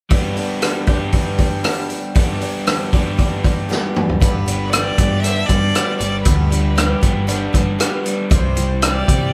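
A straight 4/4 groove at 117 BPM drives this nostalgic, hopeful slice of folk rock and heartland rock in G major, cut from a longer piece. An up-front vintage drum kit sets the pulse with a punchy kick, a medium-tuned snare, rim clicks, hi-hat and toms, its top end rolled off. Beneath it, a boxy ladder-braced acoustic guitar picks an accompaniment, while a crunchy, double-tracked overdriven electric guitar plays a riff. After a drum fill at 3.7 seconds, a dark, round hollow-body short-scale bass and a rich, focused bowed fiddle with light vibrato enter at 4.2 seconds, the fiddle carrying the melody as the harmony moves from G to C at 8.3 seconds. The band plays live in one room, and moderate studio reverb lends the whole performance a shared sense of space.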